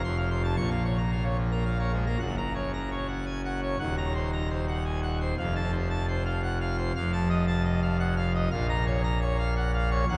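Majestic and stormy, this short cut from a longer classical organ toccata in 3/4 features a solo pipe organ on full registration, its brilliant mixtures and baroque voicing spanning from Eb1 up to Db6. The organ sits up front with a noticeable chiff on each attack, while a wet church reverb with a 3.8-second decay fills the space around it. After a brief opening, the harmony moves at 2.2 seconds into a darker passage that passes through a dominant seventh before resolving home at 8.5 seconds.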